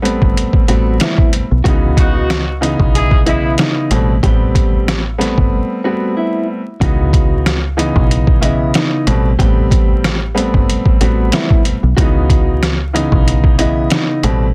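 Boom-bap hip-hop excerpt at 93 BPM with a swung 16th feel, moody and reflective, where a woody, vintage upright piano and a round, foam-muted dub bass carry Am9 and C#m9 chords under a thumpy, muffled, pitched-down sampler drum kit of kick, snare, rim click and hi-hat, while a clean, fingered electric guitar melody with warbly pitch drift and delay enters at 0.7 seconds, a jazz-style horn section adds light-vibrato stabs between 2.0 and 3.5 seconds, and a break arrives at 5.5 seconds, all set in a dry, dense, heavily limited mix dusted with vinyl crackle.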